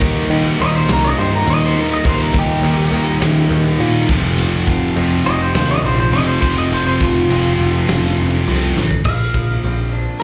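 Restless and anthemic, this short cut from a longer quiet-loud alternative rock piece drives along at 103 BPM in a straight 4/4, centred on F mixolydian. A huge arena drum kit with bright cymbals, a fat snare and a punchy kick anchors the sound, while a growly picked electric bass sits up front. Behind them, a crunchy overdriven guitar and a thick fuzz guitar play a riff until 8.8 s, both carrying slapback echo, and a very quiet, distant chamber string section holds floating, soft-attack chords above. From 0.6 s a clean, twangy electric guitar carries the melody as a solo, coloured by slapback echo and analog delay, and a drum fill lands at 8.8 s. The harmony moves from Eb through Fadd9 to F, then shifts to Bbadd9 at 9.1 s, where a lo-fi, slightly broken-up guitar through a small old amp enters with phaser-tinged arpeggios, all set in the light club reverb of a live gig heard through the venue's PA.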